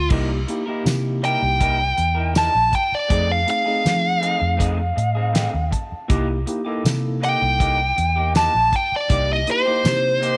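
A light, small-room ambience frames this laid-back, swaggering straight-eighth soul blues excerpt, which moves between C7#9 and F7#9 chords. Up front, a smooth, dark, overdriven lead guitar carries the melody with slapback echo, over a round, foam-muted fingered electric bass and a dry, rolled-off 70s drum kit with a fat snare, tight kick, hi-hat, crash and tambourine. A clean tine electric piano with medium tremolo accompanies through a combo amp and plays a fill from 4.6 to 6.1 seconds, while a bright, twangy guitar through a small old amp adds slightly broken-up, lo-fi stabs.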